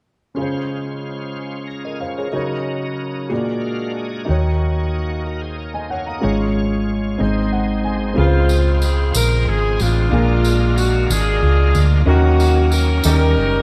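In a straight six-eight pulse, this slow gospel passage, cut from a longer piece, rolls forward with a jubilant, uplifting spirit. From the opening, an intimate upright piano with woody tone and audible action noise carries the accompaniment, while a bright, shouting tonewheel organ holds sustained chords through overdrive, chorus vibrato, key click and a slow rotary speaker, adding a short fill of its own. A dark, round hollow-body electric bass, fingered and amped, arrives up front at 4.3 seconds, and the piano adds a brief fill before the second section. At 8.2 seconds a punchy saxophone section takes the melody, clear and smooth on top with pop-style vibrato and a touch of tape echo, joined at 8.5 seconds by a jingly tambourine that sounds distant, as if in a large room. Light reverb frames the ensemble as the harmony moves through rich seventh chords toward a dominant turnaround.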